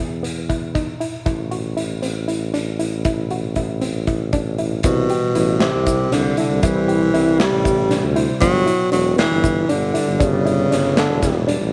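A soft, round synth pluck opens this cut from a longer progressive instrumental, its chorused, nasal arpeggios sitting dark in the background while a punchy tuba carries the bass up front with a touch of vibrato. A big rock drum kit comes in at 0.2 seconds, its punchy kick, medium-tuned snare and hi-hat ringing in a bright, pumping stone room, and the music moves in an uneven 7/8 with a straight, driving feel. The harmony starts on a bare E power chord and moves to A minor, then the second section at 4.8 seconds shifts through C and G. At that point a close-miked tenor saxophone takes the lead in a jazz style, its warm subtone, soft attack and light vibrato placed front and center. A very quiet, clean tine electric piano joins underneath through its built-in speakers, and a grainy, compressed tube shaker adds saturated texture at the back. A moderate spring reverb gives the whole a bright, energetic glow.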